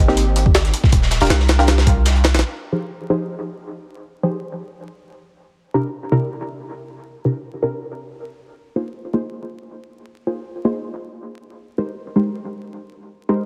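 Drum and bass in a jungle vein at 159 BPM in F dorian, this raw, frenetic excerpt opens with a deep, sine-toned 808-style bass sustaining up front beneath a thumpy, pitched-up jungle sampler kit with a high-tuned snare and a gritty background breakbeat with a rolled-off top, all of which drop out at 2.4 seconds. A muted, detuned sawtooth chord stab with chorus and dub echo carries on alone to 13.4 seconds, its filter sweeping during the opening 2.4 seconds as the harmony moves from Abmaj7 and Ebmaj9 through Fm7, C7 and Bb7sus4 back to Abmaj7. The dense, heavily limited master sits in a small room ambience with vinyl crackle.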